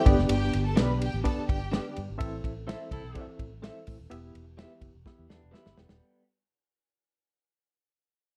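Lush bowed strings, a reedy, worn electric piano with fast tremolo and a soft, flute-like tonewheel organ through a slow rotary speaker open this danceable, uplifting fragment of uptempo 1960s-style soul at 126 BPM over G, Am and Em, joined by a round, foam-muted bass and a dry, up-front drum kit with a tight kick, then slightly broken-up picked guitar stabs, a clear saxophone section line with slapback echo at 2.7 s, a faint lo-fi guitar riff at 5.3 s, and a drum fill at 5.1 s as the whole passage fades out.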